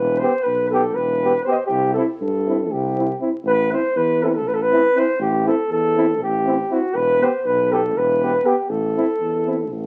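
Bittersweet and virtuosic, this excerpt of Balkan brass band folk music moves in a straight 7/8 at 240 BPM in eighths, in A minor, with the harmony turning from Em through C to Am and back. A dark flugelhorn leads the melody up front with vibrato, in a distant, roomy classical style, over a mellow tuba bass with light vibrato. Trombone and euphonium join at 0.2 seconds with warm accompaniment, the trombone with vibrato and the euphonium soft in attack with a smooth top, all framed by moderate studio reverb and the crackle of a very old 78 rpm record.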